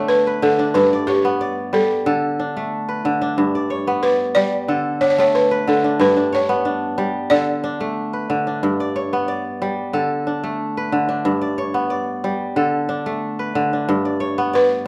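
A moderate recital-hall reverb, with a 1.4 s decay, surrounds this hypnotic, flowing excerpt of West African traditional string and xylophone music, set in G lydian at 91 BPM in a straight 4/4. Up front, a fingerpicked acoustic kora plays bright, ringing arpeggios from G2 to D5 throughout the full 14.9 seconds, its tone crisp. A balafon, struck with soft rubber mallets, carries the melody between G4 and D5, its woody, buzzing voice dry and close. The balafon plays from 0.1 to 8.3 seconds, then leaves the kora alone until a brief return at 14.6 seconds. Underneath, the harmony sways steadily between D5 and G, which gives the passage its circling, trance-like pull.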